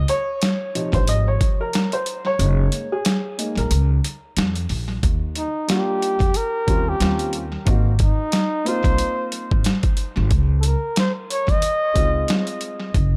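Jazz-hop at 91 BPM with a lazy 16th-note swing and a slightly flat tuning, this smooth, relaxed excerpt pairs a dark, mellow upright piano voicing jazz chords with an up-front, woody pizzicato upright bass and a gritty, pitched-down boom bap kit whose overdriven, thumpy kick briefly drops out from 2.4 to 5.0 seconds, before a breathy, whispered flugelhorn enters at 5.4 seconds with an intimate, vibrato-tinged melody, all set in a small, lightly reverberant room with tape echo trailing the drums and horn.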